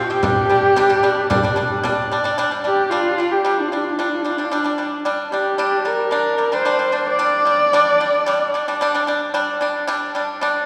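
A husky, focused horsehead fiddle carries a windswept, solemn Mongolian folk melody with vibrato and portamento over dry, fingerpicked pipa arpeggios at 112 BPM in G yu mode, while a small frame drum sounds only from 0.2 to 2.2 seconds and the fiddle falls silent at 8.8 seconds, leaving the pipa alone until 10.6 seconds in a reverberant concert hall, in this fragment cut from a longer piece.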